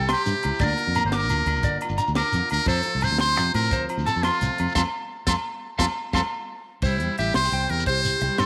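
A straight 12/8 groove at 116 BPM drives this carefree highlife guitar band clip in C mixolydian, cut from a longer piece, with a grainy shekere in the background and a round, dark fingered electric bass sounding from the start, joined at 0.1 s by a tight funk drum kit (high-tuned snare and tight kick) and ringing agogo bells. Up front, a buzzy, close-miked trumpet with a metal mute carries the melody with scooped notes, while a twangy, slightly broken-up electric guitar picks high arpeggios through slapback echo and a fingerpicked nylon-string guitar adds classical accompaniment underneath. The band hits an accent from 4.8 to 6.8 s as the agogo bells drop out at 6.2 s, and a moderate echo-chamber reverb gives the whole a small-room glow.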